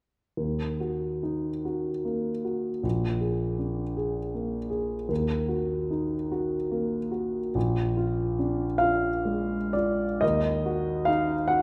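In a rubato 6/8 that drifts between 40 and 54 BPM in dotted quarters, this wistful, mournful romantic nocturne for solo grand piano sits in Eb minor, tuned to A4 = 438 Hz, and rocks between Ebm and Bb7 before settling back on Ebm at 10.2 seconds as a new section begins. The piano is intimate and up front, ranging from Bb1 to Gb5, with a long natural sustain and audible action noise. A wet recital hall reverb with a 1.7-second decay surrounds it in this brief fragment of a longer piece.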